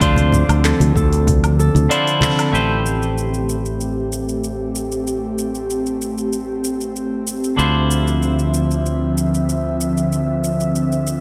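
A lush hall reverb wraps this short passage from a longer sunset chillout piece, giving it a wistful, smooth glow. An airy, breathy pad sits up front with chorus, holding detuned sustained chords that move from Dm9 to Am9 at 2.5 s and later back to Dm9, while a clean, scooped electric guitar accompanies through digital delay. A ringing, fingerpicked Celtic harp adds bright arpeggios, coloured by delay and vintage 12-bit sampler grit, until 4.4 s, and a growly, punchy fretless electric bass sustains beneath. A deep house kit with metallic hats, handclaps, shaker and woodblock carries a straight 4/4 pulse throughout. A deep electronic kick and very quiet, soft-handed congas appear only in the opening seconds, the congas stopping at 2.3 s, and the band hits an accent just before the chord change.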